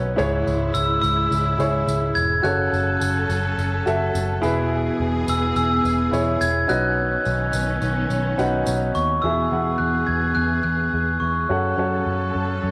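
A home cassette recording with lossy compression artefacts, moderate spring reverb and small-room ambience frames this hopeful, piano-driven pop fragment, cut from a longer piece and moving at 106 BPM in a straight 4/4. An intimate grand piano with audible action noise sits up front as the accompaniment, while a lush, woody string section holds bowed chords with vibrato beneath it; both carry a cassette-tape colour. A dark, round, foam-muted electric bass, picked and amped, stays close and prominent at the bottom. A glockenspiel struck with soft plastic mallets enters at 0.7 seconds with an airy, bell-like, ringing melody high above, also touched by tape character, and a jingly, close and dry tambourine adds percussion until 9.1 seconds. The harmony moves through C#m, F#m, E and Badd9 before shifting at 9.2 seconds to a closing passage on E and F#m, keeping the mood warm and hopeful.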